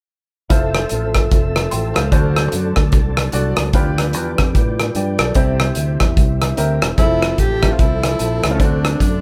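At 0.5 seconds the band starts together in an uptempo, swung gospel groove that feels soulful and hopeful: a punchy acoustic drum kit sits up front with hi-hat, kick and rim click in a small-room sound, while a dark, round fingered electric bass anchors the low end. A bright upright piano carries the accompaniment with a worn, woody, slightly detuned character. Behind it, a tonewheel organ holds smooth sustained chords through a slow rotary speaker and chorus vibrato, sitting in the background. A mellow French horn section also holds sustained chords in a tight, classical style, very quiet in the blend. At 7.0 seconds a breathy tenor saxophone enters for a close-miked, jazz-style solo with vibrato and subtone, carrying the melody until the fragment of the longer piece cuts off at 9.2 seconds, all heard in a moderate studio ambience of a band playing live in one room.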